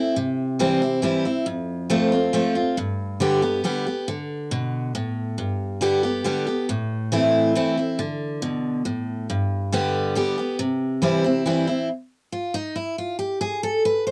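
A bright, full-bodied picked steel-string dreadnought guitar plays alone and up front through this lively, rustic bluegrass piece in C major at 138 BPM in 3/4, moving through C, F, G, D5 and Am in a wet booth with a cassette home-recording character before its closing solo stretch from 11.9 seconds to the cut at 14.1 seconds.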